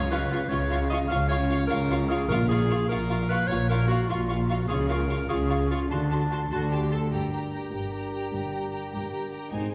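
A clear, focused double bass section sits up front in this short cut from a heroic adventure film score, bowing low with vibrato beneath a woody cello section throughout. At 100 BPM in 12/8, the swashbuckling cue lays a high, smooth violin melody over a lush second violin line and a rich viola accompaniment. A bright, present solo clarinet carries its own second line until 6.9 seconds. The harmony moves from Db through Bbm and back to Db, touching D7 before settling on Gm. Very quiet timpani with soft mallets add a round tone at 2.3 and 7.1 seconds, and from the second of those a dark, distant French horn section holds sustained chords. A scoring-stage reverb places the orchestra further back in the room, lending the passage an adventurous sweep.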